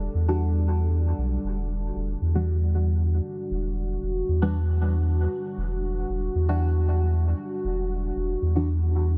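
A round, sine-toned sub bass sits up front throughout this meditative dub techno fragment, anchoring a single Em9 harmony. Soft, wave-folded chord stabs enter at 0.3 seconds and decay through chorus, phaser and dub echo, while a moody, detuned ambient pad with a slow attack and long release sustains dark chords, bathed in chorus and its own built-in reverb. Light reverb and a dense, heavily limited modern master deepen the hypnotic feel.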